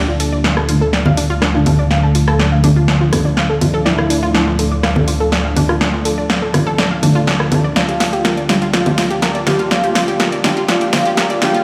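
A straight 4/4 pulse at 123 BPM drives this hypnotic, dark melodic techno excerpt in D minor, where a punchy, up-front deep house kit of congas, hi-hat, rim click and snare joins at 0.2 seconds over a rumbling detuned saw bass, a moody background pad, round chorused analog plucks and warbling vintage brass stabs, while a fat analog lead with vibrato surfaces in brief phrases before settling in from 7.8 seconds as the chords shift from Dm to Gm7/D, a very quiet riser creeps in at 10.0 seconds, and filter sweeps and a drum fill build tension throughout inside a huge ambient reverb.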